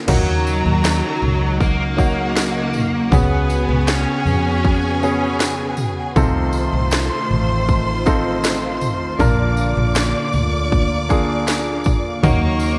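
A bluesy, overdriven lead guitar carries the melody of this heartbroken pop ballad in Eb minor at 79 BPM. Its dark, distorted, picked tone is trailed by digital delay, and it drops out at 5.4 seconds before returning at 12.2 seconds. Beneath it, a polished baby grand piano plays the accompaniment, while an airy sawtooth pad, detuned and treated with chorus and phaser, holds sustained chords in the background. A lush, distant violin section adds an expressive, bowed second line with vibrato, and a foam-muted, amped electric bass gives a round low end. The electronic house drum kit, with its punchy kick, cracking snare, crash and toms, is bathed in gated reverb, and a jingly tambourine sits further back. The harmony moves from Ebm7 through Db7sus4 and F7 to Bb before returning to Ebm7, and the bright 1980s-style digital production with light reverb gives this melancholic fragment of a longer song its sheen.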